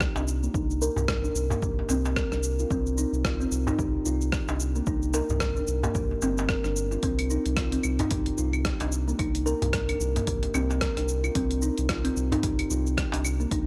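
This hypnotic, mystical organic downtempo piece, cut from a longer track, opens on woody, up-front kalimba arpeggios with a low-pass filter, tape echo and a filter sweep, set over a round, dark analog bass with sidechain pumping on a Cm7 chord. A gritty sampler-style kit of claves, hi-hat, rim click and shaker and a punchy, layered electronic kick, both overdriven, carry a swung groove, while a crisp, deep metal-shell darbuka played with hard hands enters at 0.2 s. The dry hardware recording has transformer saturation and light digital ambience.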